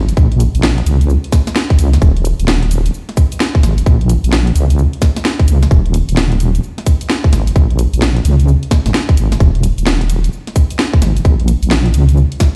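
Bouncy and moody, this swung two-step UK garage clip, cut from a longer piece, rides a deep, dark, detuned sawtooth-and-sine wobble bass with chorus, tube saturation and sidechain pumping. Above it sit an up-front, tight electronic kick and a lower-set garage kit of warm hi-hats, shaker and cracking snare, the mix sounding as if played on a big sound system in a bare stone room.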